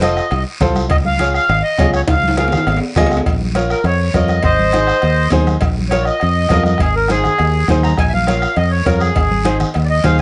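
Cumbia excerpt in Bb minor at a driving, danceable 204 BPM, where a reedy, vintage accordion with plate reverb carries the melody up front over a brilliant, woody upright piano, a dark, round and punchy fingered electric bass, a soft-beater bombo, background congas struck with hard hands, ringing metal-shell cowbell and timbales, and a raspy, distant guiro, with a drum fill from 2.1 to 3.3 seconds leading into an accordion solo that runs from 3.3 seconds to the end over alternating Bbm and Ab chords.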